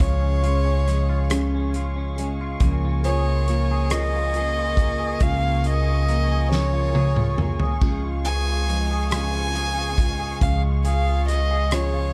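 Melancholic and dramatic, this slow six-eight pop ballad excerpt sets an intimate, close violin melody with an airy, sul tasto bow and light vibrato over a bright, twangy clean electric guitar coated in lush chorus, while a full-bodied picked acoustic guitar arpeggiates and a smooth, distant string section sustains chords in the background. An up-front, woody pizzicato upright bass anchors the low end beside a loose indie drum kit with a punchy kick, fat snare and dark cymbals, which plays a fill from 6.5 to 7.8 seconds and stops at 11.9 seconds. The dark production sits in light studio reverb, with the chords moving from Db to Bbm7/Db.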